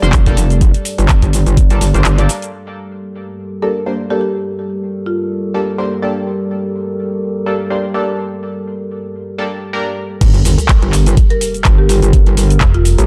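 Bass house at 125 BPM in G minor, swaggering and aggressive, where a knocking electronic kick and a garage kit with metallic hats, handclaps, shaker and crash drive a saturated, wobbling FM bass over a deep, moody pad and a nasal, band-passed chord stab with phaser and delay that gets a filter sweep from 2.5 s. A woody marimba line enters at 3.6 s and returns in the drop at 10.2 s, where a very quiet sub drop and, near the end, a short digital FM bass arrive in a dry, dark mix.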